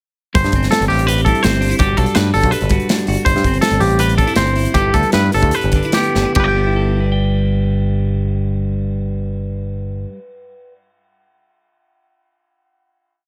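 A twangy, fingered guitar ostinato and a bright, compressed clean guitar with plate reverb open this short, wistful and playful piece of math rock and midwest emo, alongside an airy studio drum kit with a punchy kick and a funk groove. A punchy, direct picked bass plays a syncopated riff under lush chords such as C6/G, Gmaj9 and G69, as the music slows from 3.3 seconds. A drum fill at 6.2 seconds leads into a final G chord, which the guitars and bass sustain after the drums stop at 6.5 seconds.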